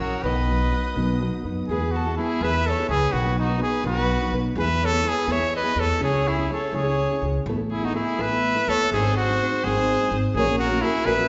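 Awash in a church-like hall reverb whose highs stop at 7.9 kHz, this proud, romantic mariachi excerpt in a rubato 6/8 puts a bright, close-miked trumpet melody up front over a rich, nasal solo violin second line, a full-bodied fingerpicked nylon-string guitar and a woody pizzicato upright bass, while a lush background violin section holds sustained chords with portamento for only the opening 1.7 seconds as the harmony moves from B and E through C#m and Asus2 to G# and F#7/A#.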